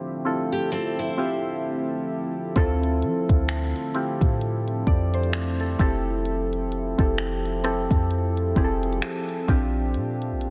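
Moody and longing, this slow contemporary R&B excerpt at 65 BPM opens with a sparse break where soft, round electric-piano-like synth keys with chorus and phaser sit over a deep, dark ambient pad, while a picked steel-string acoustic guitar adds brief, full-bodied arpeggios with tape echo. At 2.6 seconds a clean, boomy 808-style bass and a smooth, up-front electronic drum kit with finger snaps, crisp hi-hats, a soft kick and rim clicks arrive, settling into a swung 16th-note feel. The chords move from Dm11 to Fmaj7 and then Bb6, all set in light digital ambience.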